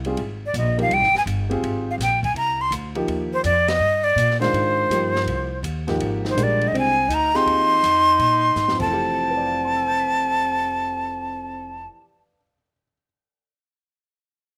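Upright bass, a small-room drum kit with dark cymbals and a boomy kick, and a natural-toned baby grand piano open this spiritual, open modal jazz excerpt in a swinging 4/4, as a breathy, bright flute with vibrato and crisp chiff takes the melody up front over an Abmaj9 harmony, a band accent lands at 3.6 seconds, a clear alto saxophone with scooped notes and light vibrato joins as a second line at 6.3 seconds, and after a drum fill the harmony moves to Fmaj9 while the woody, growly bass and the piano's slapback echo carry the dry, outdoor sound on.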